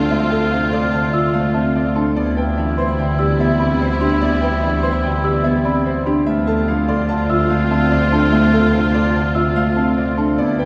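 Classical minimalist pattern music in 5/4 at 146 BPM, this meditative yet urgent fragment in D dorian moves from Dm7 to Cmaj7/D at 2.2 seconds and back to Dm7 at 6.3 seconds. An intimate, boxy grand piano with audible action noise carries the melody over a clear oboe second line with light vibrato. Fingerpicked, ringing Celtic harp accompaniment, woody, rustic marimba and delicate, bell-like celesta arpeggios set in the background, lush bowed string chords, and a focused single bowed double bass holding D2 all sit far back in a cathedral reverb.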